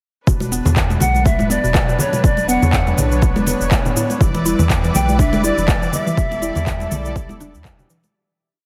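A punchy four-on-the-floor kick, programmed shaker and handclaps and ringing, interlocking live congas drive this earthy afro house piece at 122 BPM with a 16th-note swing in E dorian, where a round sine sub bass with tube saturation plays a dotted rhythm, a woody FM mallet pluck repeats a 32-step arpeggio with chorus and phaser in the background, and a smooth, rich string section sustains chords, all three with sidechain pumping, while breathy cane pan pipes with chiff and dub echo call out motifs from 1.0 seconds, dark detuned synth brass adds syncopated stabs from 2.2 seconds, and the whole heavily compressed, radio-like mix begins fading out at 5.5 seconds.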